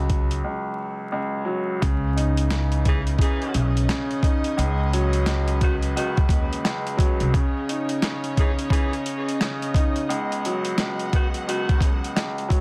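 Dense, heavily limited and dusted with vinyl crackle in a small room, this reflective, moody boom-bap hip-hop excerpt at 87 BPM in C# minor swings a gritty, pitched-down sampler kit with a thumpy kick beneath a clear, intimate upright piano with audible action noise and a cassette-tape tint, a woody, growly pizzicato upright bass that stops at 7.3 s, a rich bowed string section with gut-string tone sitting in the background from 1.8 s, and distant, roomy jazz saxophone stabs with light vibrato and digital delay arriving at 2.9 s.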